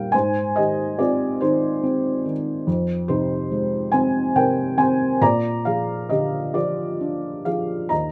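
Classical solo piano, lyrical and calm, this short passage is cut from a longer piece and drifts at a slow 46 beats per minute in 6/8, with rubato that lets the beats fall unevenly. A felt-muted upright piano carries everything alone from 0.0 to 8.1 seconds, ranging from Eb2 up to Bb5. Its tone is soft, dark and boxy, the thick felt giving each note a mellow, intimate quality, and it sits up front in the sound. The harmony moves gently from Ab to F minor at 2.7 seconds and settles on Bb6 at 5.2 seconds. A light reverb surrounds the instrument, keeping the peaceful mood close and unhurried.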